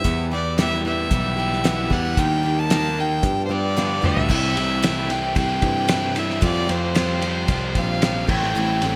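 Bright, 1980s-style digital production with light reverb and a small-room ambience frames this nostalgic, jangly folk and heartland rock excerpt at 113 BPM in G major, where an up-front, earthy bowed fiddle carries the melody with a touch of delay. Picked steel-string acoustic guitar sits in the background, a crunchy, double-tracked overdriven guitar plays a riff, and a very quiet tonewheel organ holds clean chords with audible key click. A round picked electric bass and a cloth-damped, thuddy drum kit with a fat snare, dark cymbals and gated reverb anchor the groove, with a drum fill at 3.8 seconds leading into the second section at 4.3 seconds.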